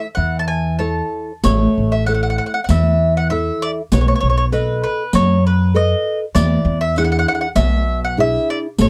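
Romantic and wistful, this brief fragment of an Italian folk serenade moves in a rubato 4/4 around 98 BPM in A major, tuned to A4 = 436 Hz, with an up-front, round-toned picked mandolin carrying the double-string melody over a fingerpicked classical nylon-string guitar, a woody, thumpy gut-string upright bass plucked pizzicato from 0.2 s, and a distant riq whose bright jingles sound in a large room from 1.4 s, all passing from A through B7 to E7 in a dry, dark, warm production.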